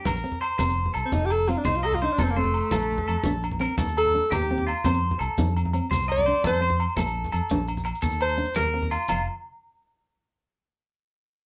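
Highlife guitar band in a sunny, straight 12/8, heard in a short cut from a longer piece, with the band playing live together in one room under a moderate studio reverb. A fingerpicked nylon-string guitar and a bright, twangy electric guitar picking compressed arpeggios ride over a round fingered bass, while low-tuned congas struck with hard hands sound in a small room and ringing agogo bells and grainy maracas keep the groove close and dry. From 1.1 s a clear, forceful alto saxophone takes a jazz-style solo up front, its vibrato and smooth top floating over changes through F7, Bbmaj7 and Eb6 until 8.9 s.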